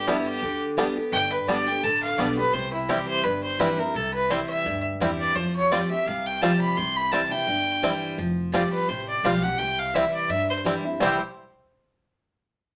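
Rustic and joyful, this bluegrass excerpt in C major runs at a brisk 170 BPM with a light swing on the eighth notes. A clear, biting fiddle with light vibrato carries the melody up front alongside a bright, twangy fingerpicked banjo that enters at 0.1 s, while a full-bodied picked dreadnought guitar supplies accompaniment and a woody pizzicato upright bass sits low in the mix underneath. The chords move from G to C and through Fsus2, and a wet studio reverb with a short tail and a softened top end frames the ensemble.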